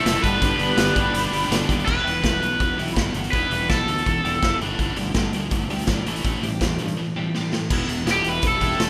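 Indie rock with a bittersweet, restless feel, this rough home-demo snippet sets an up-front overdriven garage guitar melody over a scooped high-gain distorted riff, a twangy twelve-string electric guitar riff in the background, a growly fuzz fingered bass and a gritty, saturated garage drum kit in a pumping stone room, with a very quiet clear trumpet line ending at 1.5 seconds, a faint shimmering pulse-width pad returning at 7.7 seconds, and a drum fill at 7.3 seconds.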